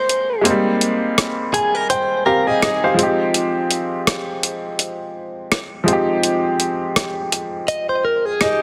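A swung sixteenth-note groove in 4/4 drives this short contemporary R&B fragment, cut from a longer piece, with a moody, longing air. A crisp, sampler-style 8-bit drum machine sits up front with hi-hat and rim click, its snare carrying soft clipping and its tone faintly tape-warm. A clear baby grand piano carries the accompaniment throughout, intimate and slightly worn, with audible action noise and short sustain, and it adds fills from 1.2 to 3.3 seconds and again from 8.0 seconds. A clean electric guitar, recorded direct and compressed, plays picked arpeggios through a digital delay, dropping out at 3.0 seconds and returning at 7.7. The harmony moves from Abmaj7 to Fm9 within a break, and light reverb with digital ambience surrounds a dense, heavily limited modern master.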